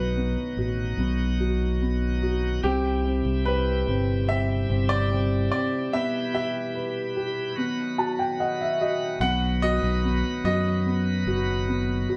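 From the first second a clear grand piano with audible action noise carries the melody over a soft felt-muted upright piano, a bright, lightly overdriven tonewheel organ turning through a slow rotary speaker, and a round, punchy fingered electric bass, all playing live in a large studio room in this melancholic, emotional pop ballad excerpt, which pauses for a break from 5.9 seconds where the felt piano adds a fill at 7.6 seconds before a new section begins at 9.2 seconds.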